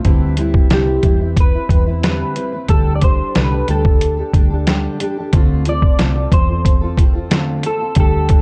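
Muffled, thumpy sampler-style drums sit up front in this wistful, mellow bedroom-pop excerpt, joined by a round, foam-muted bass from 0.1 seconds, a dark, full-bodied fingerpicked acoustic guitar wrapped in lush chorus and warbly pitch drift, and a slightly broken-up electric guitar melody through a small old amp with analog chorus from 0.7 seconds, all moving over Cmaj7, Gsus2 and Dm7 in a dark, warm digital ambience.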